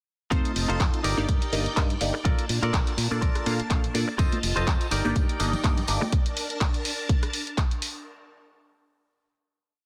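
Filtered disco house at 124 BPM in Bb major, with a light 16th-note swing and a funky, joyful mood across this short, complete piece. A punchy four-on-the-floor electronic kick sits up front, joined by a programmed house kit of bright closed and open hats, rim clicks and a handclap backbeat, with the hats pumping against the kick. A bright, punchy fingered electric bass plays an octave-jumping line, while a twangy, scooped clean guitar, recorded direct, picks a funk chord riff. A detuned, wave-folded polysynth with a fast filter pluck comps rhythmic chords through chorus and phaser, and a swirling vintage string machine holds soft-attack pads underneath until 8.0 s, both breathing with sidechain pumping. Soft-handed tambourine and congas slip into the background between 4.2 and 6.1 s as the F7, Ebmaj7/G and Bbmaj7 progression comes around again. The whole track plays as one drop in light digital ambience, with a dense, heavily limited modern master.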